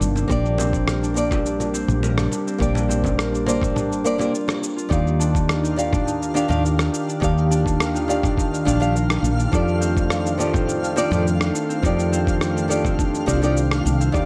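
A relaxed sunset chillout excerpt opens with fingerpicked nylon-string guitar and ringing concert harp arpeggios, both touched with tape echo, over a thick, warbling chorused pad and a round, hollow-bodied fretless bass sitting up front, while a gritty, overdriven sampler-style kit of rim clicks, shaker and toms and bright vintage congas in the background set the groove. A thumpy electronic kick drives the opening until it drops out at 3.8 seconds, and the band hits an accent at 4.5 seconds, just before the kick returns and the harmony moves into its second section at 4.9 seconds. From 5.7 seconds a twinkling granular shimmer sparkles quietly behind the echo-heavy, lightly reverberant mix.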